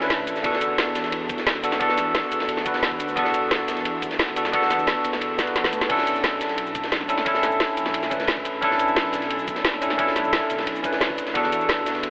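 A bell-like tine electric piano with analog chorus and delay sits up front over a deep, rumbling detuned saw bass in this dreamy, soulful liquid drum and bass piece at 176 BPM in B minor, driven by a drum and bass kit with a woody snare, metallic hats, cabasa and crash, a gritty, saturated breakbeat kit of dark cymbals and snare in the background, and a knocking electronic kick entering at 0.2 seconds, while chords move from E9sus4 to Bm11 after a drum fill at 5.4 seconds, all bathed in huge ambient reverb with a telephone tone and faint mains hum.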